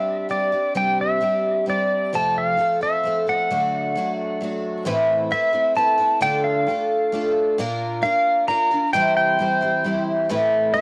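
A home cassette recording with a moderate booth ambience carries this hopeful rock fragment in three-four time, cut from a longer piece. A picked twelve-string acoustic guitar plays a shimmering, octave-doubled accompaniment up front. Over it, a bright, twangy pedal steel guitar, played with fingerpicks and slide, carries the melody with volume swells, compression and an analog delay, moving through chords such as Csus2, F, Amadd9 and Bb.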